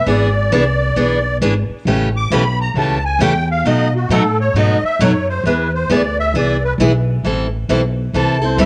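A musette accordion and an upright bass open this short, fiery cut from a longer jazz manouche piece, with the picked steel-string acoustic guitar joining at 0.1 seconds. The tempo is a swinging 134 BPM in 4/4, tuned slightly low to A4 = 436 Hz, and the accordion carries the melody as a solo throughout, its reedy, shimmering musette tuning sitting up front. Beneath it, the pizzicato upright bass sounds woody and thumpy, while the guitar's bright, fresh-stringed accompaniment carries audible finger squeak and a cassette-tape colour. The harmony moves from E7 through A7 and B7 to E, then turns to Am7 at 7.2 seconds as the section begins again. A moderate spring reverb and the character of a home cassette recording give the performance a swinging, fiery feel.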